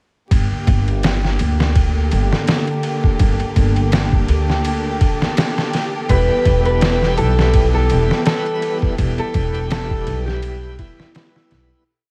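A dark, smoky trip hop piece opens from the start on a swung, pitched-down looped breakbeat with edits: a thumpy kick, medium-tuned snare and ride cymbal, compressed and tape-warm, sitting up front beside a woody, growly pizzicato upright bass playing a dub-style line. Underneath, a studio string section holds soft-attack, sul tasto chords with light vibrato, intimate and close. From 1.5 seconds, an airy, breathy wind-like noise layer sustains a single high note wrapped in its own built-in reverb. At 6.1 seconds an electric slide guitar, slightly broken-up and played with fingerpicks, enters with a repeating riff melody trailed by tape echo. With it comes an overdriven tonewheel organ in the background, shouting through a slow rotary speaker and tremolo as it holds rootless chords with syncopated pushes. Vinyl crackle and a light digital ambience colour the whole piece, and a fade-out begins at 8.0 seconds.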